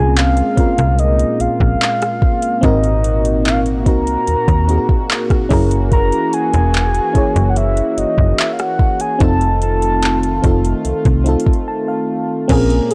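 The opening moment brings a soft, octave-layered synth lead, a mellow FM electric piano, a smooth analog pad and a snappy, slap-like FM bass together, with the drum kit joining at 0.2 seconds in this slow, longing, late-night contemporary R&B piece at 73 BPM in 4/4. The lead carries the melody up front with a full, round tone doubled by a sub octave, colored by vibrato, chorus and analog delay, while the electric piano adds soft, dark accompaniment with a noise layer and chorus. Beneath them the detuned sawtooth pad holds sustained chords with a gentle attack, and the bass sits forward with a metallic, digital bite that decays. The electronic drum kit pairs a soft kick with metallic hi-hats, handclaps, rim clicks and a crash cymbal, and the harmony moves from Bbm9 through Ab9 and Gb7 to F7. An electric piano fill arrives at 11.3 seconds and leads into a brief break, all heard in a dry, gritty cassette-tape sound that is cut from a longer piece.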